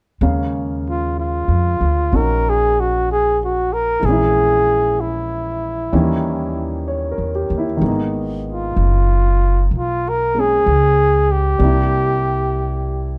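This jazz ballad excerpt moves at a slow 63 BPM in 4/4 with a gentle swing on the eighth notes, setting a smoky, intimate mood. Grand piano and upright bass begin together at 0.2 seconds: the piano supplies warm, natural-sounding accompaniment with its action noise faintly audible, while the plucked bass sits up front with a woody, thumpy tone from gut strings. A breathy flugelhorn enters at 0.9 seconds to carry the solo melody, close-miked and forward, with a soft attack, light vibrato and scooped notes in a classic jazz manner. The harmony drifts through rich minor and altered chords, opening on Ebm11, passing through Eb7b9 and Abm9, and landing on C9 before the clip stops at 13.2 seconds. Light reverb and a dark, warm production wrap the trio in a late-night glow.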